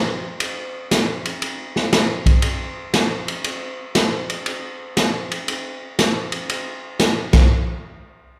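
Bluesy and soulful, this brief swinging jazz excerpt features a lone big-band drum kit entering at 0.4 seconds, its crash and ride cymbals, hi-hat, medium-tuned snare and boomy kick sounding roomy and distant yet up front within a moderate recital-hall reverb.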